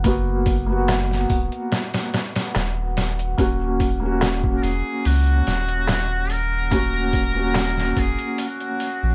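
A buzzy, metal-muted trumpet with light vibrato and dub echo enters at 4.6 s over this melancholic, smoky trip hop excerpt at 72 BPM in Eb minor, where a mellow felt-muted upright piano with tremolo, 12-bit sampler grit, tape echo and audible action noise moves from Bmaj7 to Ebm7 above a deep, round dub sub bass, a compressed, pitched-down sampler drum kit with a thumpy kick, and a clay-shell darbuka tucked in the background from 0.9 s, all in a dry, close-sounding space.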